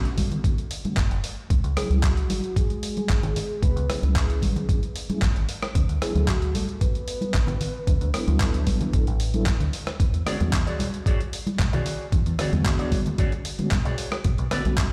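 Nu-disco at 113 BPM in straight 4/4, this short cut from a longer piece has a cosmic, sleek mood built over Bm7, F#m9, D6 and E13 chords. A deep, foam-muted fingered electric bass sits round and dark beneath a gritty, thumpy electronic kick. A dusty, overdriven sampler-style kit adds handclaps, hi-hat and rim click, while bright, damped congas tap along in the background. Mellow synth brass carries the chords with detuned sawtooth tone, chorus, cassette-tape colour and sidechain pumping, and an analog polysynth filter sweep runs through the whole piece. A soft, octave-layered synth lead with a sub octave, phaser and digital delay sings its melody from 1.8 to 9.4 seconds, and a twangy, clean electric guitar through an envelope filter and lush chorus takes up a riff from 10.3 seconds. The mix sounds as if played on a big sound system in a bare stone room, with a reverberant digital ambience around it.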